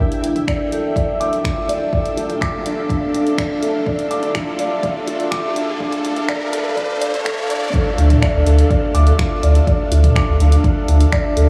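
A round, deep analog bass with tube saturation and sidechain pumping anchors this cinematic, moving piano and strings electronica excerpt in D minor at 124 BPM. A soft, felt-muted upright piano riff sits up front with diffuse ambient delay, while a cloudy, evolving granular pad holds sustained chords with lush chorus and pumping, and a punchy electronic kick joins a deep house kit of finger snaps, hi-hat and toms. A filter sweep and a background riser from 1.7 seconds build toward a drop at 7.7 seconds, all set in a dreamy mix soaked in huge reverb.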